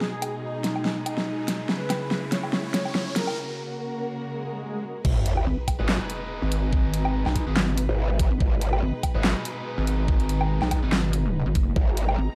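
Dark, warm production with light digital reverb frames this aggressive, menacing cut of heavy wobble dubstep at 143 BPM in G# minor, felt in half-time with a 55% swing on the 16ths. It opens on a build-up: a smooth, airy supersaw melody with digital delay floats over a lush, woody string section, bowed sul tasto with vibrato and pumped by sidechain. Beneath them, an overdriven dubstep kit plays a fill of huge snare, handclaps, hi-hat, woodblock and crash, while an electronic riser, swell and sub drop build tension. The supersaw stops at 3.4 seconds for a short break as the chords move from G#m through C#m to F#. At 5.0 seconds the drop lands back on G#m with an impact: a knocking electronic kick comes up front, joined by a growling, bright bass with a formant filter and chorus holding G#1, and a pulsing, heavy pluck wobble bass, both saturated and detuned. Quiet, picked, double-tracked electric guitar stabs with distortion and delay cut through the drop, and the strings carry on to the close.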